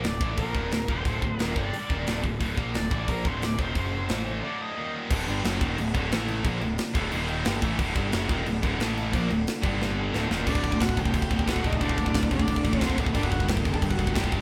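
Recorded live by a band in one small room with moderate reverb, this aggressive, heavy metal passage runs at 179 BPM in a straight 4/4 and is cut from a longer piece. Up-front tight drums with bright cymbals drive a punchy fuzz bass and two high-gain rhythm guitars, one scooped, sitting back in the mix. Meanwhile, a distorted lead guitar carries the melody over chords centred on D, with a break just before 5.1 seconds. From that point a dark, double-tracked overdriven guitar and a very quiet string section holding veiled, lush chords join in. After a drum fill, the melody returns at 10.5 seconds alongside a second lead line set in the background.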